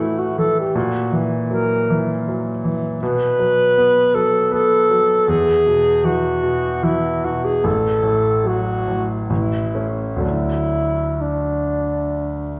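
Moving in a rubato 3/4 that drifts between 61 and 82 BPM, this short passage from a longer classical piece is a romantic duo for alto saxophone and grand piano in D major, serene and tender in mood. The alto saxophone carries the melody throughout, mellow and smooth on top, with a soft attack and light vibrato in a classical style, staying within a compact range from D4 to B4. Beneath it, the concert grand piano accompanies from deep bass notes as low as A1 up to D4, its tone clear, polished and intimate, with long sustain and the audible noise of its action. Both instruments sit up front, the saxophone slightly more prominent, while a recital hall reverb of about 1.4 seconds gives the sound a church or concert hall setting. The harmony moves from A5 through F#7/A# and B5 to E, then F#m/A and A before settling on D near 10.2 seconds.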